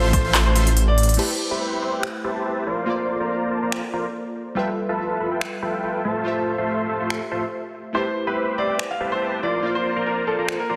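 Set in a lush hall and pressed into a dense, heavily limited modern master, this bittersweet, emotional future bass passage is cut from a longer piece and moves with a half-time feel. It opens on a drop with a huge, detuned supersaw riff carrying a sub octave, vibrato and a low-pass filter, over a thick, saturated saw bass with chorus, both up front and pumping against the sidechain. A clear baby grand piano states the melody through tape echo at the very start, and a drum fill at 1.0 seconds closes the drop. From 1.2 seconds the bass drops away and glassy digital keys with chorus, delay and a filter sweep fill in the harmony alongside the ongoing supersaw. The up-front, overdriven dance kit of finger snaps, handclaps, crisp hats and crash cymbal drives the section, and the piano returns at 7.9 seconds over chords that circle from Am9 through Bbmaj9 and G13 to Fmaj7/A.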